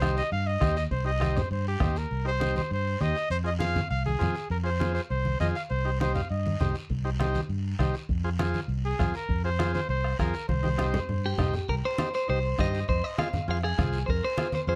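A punchy, close-miked trumpet leads this danceable, passionate cumbia excerpt in C minor at 200 BPM with a light-vibrato solo over buzzy vintage combo organ, a round, up-front fingered electric bass, soft-beater bombo, low-tuned thick-skinned congas and a raspy guiro, moving between Cm and Fm until a drum fill at 10.5 seconds hands the melody at 11.3 seconds to a scooped, compressed clean electric guitar bathed in spring reverb, all within a dark, warm production.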